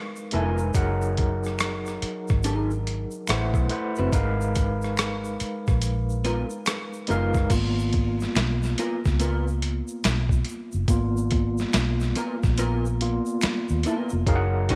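A moderate echo chamber reverb with a 2.1-second tail gives this sultry, smooth neo-soul and R&B excerpt a roomy sheen, at a relaxed 71 BPM in 4/4 with swung sixteenths and a G# dorian color moving through G#m69, F#69 and Am69. Up front, a boom bap sampler-style drum kit, compressed and pitched down with a thumpy kick, medium-tuned snare, hi-hat, rim click and crash, sounds gritty and re-recorded in a large room, while a vintage muted fingered electric bass sits alongside it, dark, round and amped. An overdriven tine electric piano carries the accompaniment through a combo amp, bright and barky with a fast tremolo, and it steps forward for a solo from 7.5 to 14.3 seconds. An electric guitar through a small old amp plays a picked, slightly broken-up second line, compressed and shimmering with analog chorus. A tube shaker, finger snaps and group handclap add a close and dry acoustic texture. 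A tight horn section with vibrato, warm and in the background, lands pop-style stabs at 14.7 seconds, just as the excerpt is cut.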